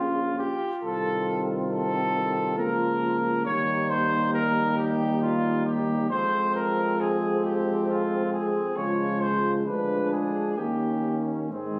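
Triumphant yet warm, this classical brass quintet moves in a slow, flexible three with rubato phrasing, heard as a short cut from a longer piece. A mellow cornet carries the melody up front, its soft attack sounding distant and roomy, while a dark trumpet with light vibrato and a smooth top sings a second line in the background. A close-miked French horn with vibrato and a euphonium with a gentle, light vibrato fill in the accompaniment, and a tuba, distant and roomy, anchors the bass. All five players sound throughout the full 11.8 seconds, the harmony passing through minor and major colours before reaching a diminished chord near 9.7 seconds and a dominant seventh at 10.6 seconds. Light reverb and the slightly informal quality of a phone recording in the room give the ensemble an intimate, spacious feel.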